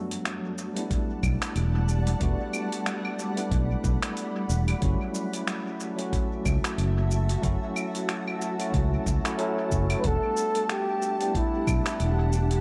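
Smooth, warm sunset chillout at 92 BPM in E dorian, with a swung feel, where a bell-like tine electric piano with dub echo and a shimmering, ethereal pad drift over Em11 and F#m7 while a dusty, gritty sampler-style kit of claves, finger snaps, hi-hat and shaker, a thumpy electronic kick and a round, up-front fretless bass hold the groove, until a breathy, intimate flugelhorn with 12-bit sampler grit and vibrato enters at 10.0 seconds in this echo-heavy plate-reverb mix cut from a longer piece.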